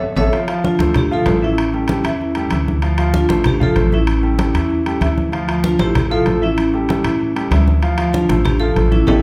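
A straight 4/4 salsa groove at 192 BPM drives this passionate D minor excerpt from a longer piece, opening on a brief band accent before bright, close congas struck with hard hands and ringing metal-shell timbales push under a metallic hard-mallet vibraphone melody with medium motor vibrato, while a clear, polished baby grand piano comps and a woody, thumpy pizzicato gut-string upright bass anchors the alternating Dm7 and A7 changes, all heard from further back in a large, wet studio reverb.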